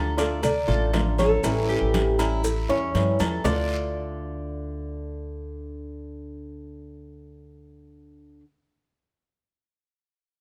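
A nylon-string guitar carries a thumb-plucked classical melody through plate reverb over a dark, boxy flamenco guitar with finger squeak, metallic double-string tres arpeggios and an up-front, woody pizzicato upright bass in this nostalgic, sultry Cuban son and guajira excerpt at 119 BPM in D harmonic minor, moving from Dm to A7 and back to Dm, while bright congas, ringing agogo bells and timbales, very quiet low-tuned cowbell and bongos, raspy guiro and grainy maracas join in the background at 0.2 seconds, play a drum fill from 2.7 seconds and drop out at 3.6 seconds.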